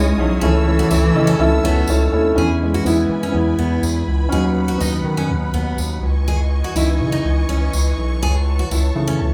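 A soft, felt-muted upright piano drives this anthemic piano-driven pop excerpt at 123 BPM in E major and takes a solo from 2.4 seconds, backed by a round analog bass, lush bowed symphonic strings, a bright picked steel-string acoustic guitar riff and a distant, jingly tambourine, while a nasal cello sings the melody with vibrato only until 1.9 seconds, set in a moderate large-studio reverb with the band playing live in one room.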